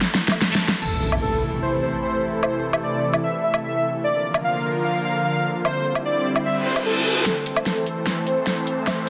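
A dense, heavily limited mix sits in a lush hall reverb, opening this chaotic, heavy half-time wobble dubstep excerpt with a drum fill from an electronic, layered kit whose huge snare, metallic hats, crash cymbal and woodblock are all low-pass filtered, beneath a slow-attack supersaw pad holding sustained chords from Am through Bb and Cadd9. At 0.8 seconds an impact lands and a smooth, evolving soft supersaw melody with sub-octave weight, vintage 12-bit sampler grit and tape echo enters over the pad and drums, after a brief, very quiet stab from a bright, double-tracked fuzz guitar. A reverse cymbal and riser lead into a build-up with another drum fill from 7.3 seconds.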